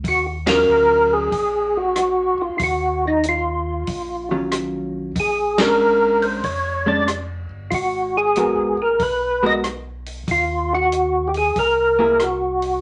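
Bluesy and smoky, this soul jazz organ trio excerpt swings in 4/4 as an up-front, fat tonewheel organ with percussive third-harmonic attack, key click, chorus vibrato and slow rotary speaker carries the melody over a round, dark organ bass line, a dark, compressed hollow-body electric guitar comping in a clean, picked style from 0.5 seconds, and a dry, mid-forward acoustic drum kit of tight kick, snare, hi-hat, ride and rim clicks, with band accents hitting at 0.4 and 5.5 seconds beneath a wet studio reverb and a rolled-off top end.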